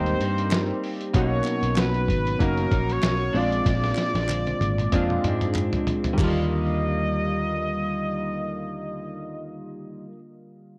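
A lightly swung 4/4 groove from a muffled, compressed, sampler-style drum kit with a thumpy kick, which plays a fill from 3.7 to 6.2 seconds, and crisp, close handclaps drives this hazy, nostalgic indie and bedroom pop fragment, where a round, foam-muted bass sits under glossy, detuned retro synth keys with filter sweeps, a twangy clean electric guitar soaked in lush chorus rings in the background, and a punchy solo trumpet with light vibrato, tape echo and analog chorus floats on top, the whole mix coloured by worn, warbling cassette tape.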